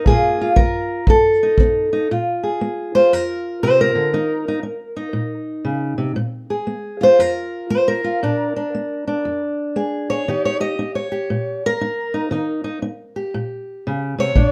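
Fingerpicked steel-string acoustic guitar and a punchy kick drum open this laid-back, gritty acoustic country blues, swinging at 117 BPM in Bb mixolydian. The guitar carries the melody from F2 up to Eb5, sitting up front with a warm concert tone and audible finger squeak. The kick, played with brushes in a natural small-room sound, is heard only briefly at the start and again at 14.4 seconds. From 2.1 seconds the guitar takes a solo over changes moving through Bb7, Eb5 and Eb7. A moderate studio reverb and dark production give the short excerpt a warm, earthy feel.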